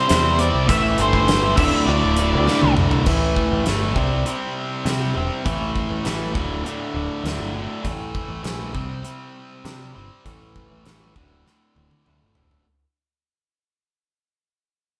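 A gated 80s drum kit sits up front in this gritty, driving classic rock excerpt, its punchy kick, fat snare and bright cymbals ringing through a polished, gated stone room, with fills at 2.5 and 11.5 seconds. At 100 BPM in a straight 4/4, two tight, bright distorted guitars grind out a picked riff in the low and middle register, one dropping away at 7.8 seconds while the other carries on to the end. A picked electric bass, direct and punchy, anchors the low end beneath them. For the opening few seconds, a dark octave-fuzz lead guitar states a short melody over chords moving from C to Am to Dsus2, while a shouting, lightly overdriven tonewheel organ with key click and slow rotary swirl sits barely audible behind it. From 3.1 seconds the harmony shifts to power chords cycling through A5, C5 and D5 as the whole band, heard playing live in one room, fades out.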